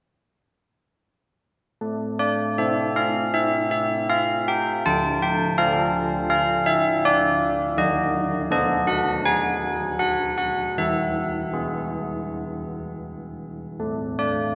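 At 1.8 s a set of old church bells sounds alone, carrying a solemn, wintry classical tune written for the bells in a steady, straight four-beat metre. Their bronze tone is clangorous, with a pronounced minor-third overtone and audible beating, and the strike of an iron clapper sits at the front of each note. Close-miked and full, the bells sit up front, while a cathedral reverb with a long 5.4 s tail surrounds them. The harmony moves from Am to Dm, then through B7/D# to E before settling back on Am at 13.8 s. The bells fall silent at 14.5 s, and the passage reads as a single section cut from a longer piece.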